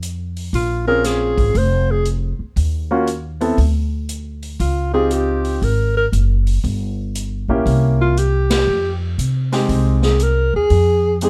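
Swinging in 4/4 at 118 BPM, this smoky, moody small-group jazz fragment in F minor rests on a woody, dark pizzicato upright bass up front and a distant, roomy drum kit with a boomy kick and rolled-off top, while a mellow alto saxophone with vibrato and plate reverb carries the solo melody from 0.5 seconds, an intimate grand piano with audible action noise accompanies from 0.9 seconds over extended jazz chords, and the band hits an accent together at 8.4 seconds.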